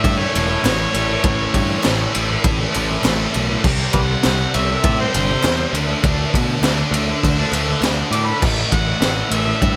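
A straight 4/4 garage rock groove drives this swaggering clip, cut from a longer piece, with a raw drum kit up front: a high-tuned snare, boomy kick, crash and ride cymbals, saturated and gritty with a rolled-off top in a small room. A thick, double-tracked fuzz guitar plays a bright, distorted riff through A, C, D5 and A5, while an overdriven, picked electric bass growls beneath it. Over the top, an amplified, overdriven harmonica carries the melody with light vibrato, tongue slaps and scooped notes, colored by tape echo. Hollow group handclaps, very quiet and distant as if from a large room, sound from 0.6 to 9.2 seconds. The band sits dry, with little reverb and a raw edge.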